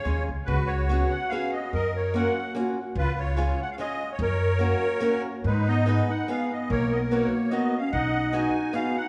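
Set in a moderate concert-hall reverb with a touch of small-room ambience, this short excerpt from a longer musette waltz in 3/4 has a nostalgic, charming mood, swung eighths and a gently rubato feel. A reedy, shimmering musette accordion carries the melody up front, over a bright, boxy picked acoustic guitar with audible finger squeaks and a woody, thumpy pizzicato upright bass. At 5.5 seconds, a warm, distant, roomy clarinet enters with a classical-style second line.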